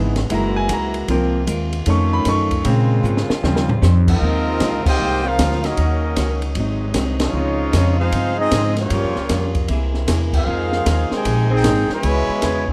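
Swinging and energetic, this big band excerpt moves at 153 BPM in 4/4 with a swing feel, set in Ab major. A clear, up-front grand piano carries the opening on its own terms as a solo passage, backed by a woody upright bass played pizzicato, a dark, clean hollow-body electric guitar tucked in the background, and a saxophone section holding sustained chords with light vibrato. The acoustic drum kit enters at 0.2 seconds, with dark cymbals, a high-tuned snare and a boomy kick, and a drum fill around 3.0 seconds leads into the full band. At 4.1 seconds the piano has dropped out and the trumpet section takes the melody with a smooth, prominent top, while a tight trombone section plays a second line behind it. Band accents land at 4.8, 7.1 and 10.3 seconds over rich harmony such as Dbmaj9 and C7b13, all captured with close, detailed microphones and light reverb.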